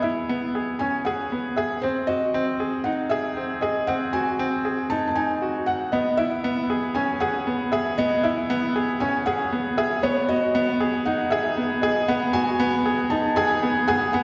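A wet recital-hall reverb with a 1.7-second decay and softened, rolled-off highs surrounds this hypnotic, melancholic electronica passage at 117 BPM, cut from a longer piece and building up throughout its 14 seconds. Up front, a clear, smooth grand piano with a vintage tone and short sustain plays a riff through a digital delay. Beneath it, a felt-muted upright piano carries the melody, intimate and boxy with audible action noise, over chords moving from C#m7 to G#7, back to C#m7, and on to G#m7/B.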